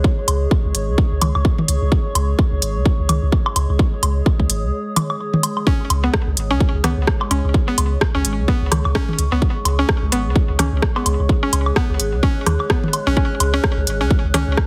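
In 4/4 with a light swing on the sixteenths, this clinical, sparse minimal techno excerpt opens. A punchy, layered electronic kick sits up front beside a house kit of crisp hi-hats and rim clicks, while electronic woodblock and toms with a tape-tinged analog color add delayed accents. A deep sine sub bass with a pitch-drop attack holds the low end, pumping against the kick. Beneath it all, a warbling, nostalgic lo-fi pad built from detuned square and triangle tones gradually fades in, its chorus and built-in reverb pulsing with sidechain. After a brief break from 4.7 to 5.7 seconds, a woody, round, mallet-like FM pluck enters with a bright, ring-modulated edge, chorus and delay. The mix is dry and heavily compressed, giving it a squeezed, radio-like sound.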